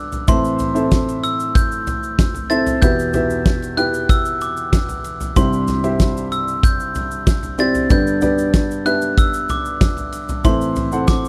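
A straight 4/4 pulse at 94 BPM drives this uplifting piano-driven pop fragment, carried by a huge arena drum kit with a punchy kick, fat snare, ride cymbal and toms sounding up front in a big room, while a grainy, bright tube shaker sits in the background. A warm, natural baby grand piano accompanies across a broad low-to-high span as the chords move from Am to Em, C and G before returning to Am at 10.4 seconds. Above it, a glockenspiel struck with soft plastic mallets carries the melody in a metallic, bell-like, ringing tone with a boxy small-room character, set in a dry, close studio sound of 1970s style.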